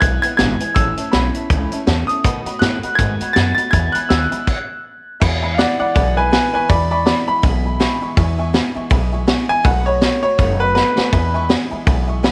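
Rockabilly at a rowdy, upbeat 162 BPM in E major with a swung feel, cut from a longer piece, featuring a brilliant upright piano carrying the melody up front over a detuned, jangly honky-tonk upright and a picked dreadnought acoustic guitar with fresh strings, both sitting in the background. A thumpy gut-string upright bass and a punchy vintage drum kit with dark cymbals and a high-tuned snare drive the tune in a dry studio room, with a stop at 4.5 seconds before the piano takes a solo from 5.2 seconds. A short drum fill at 10.8 seconds leads the changes back to E.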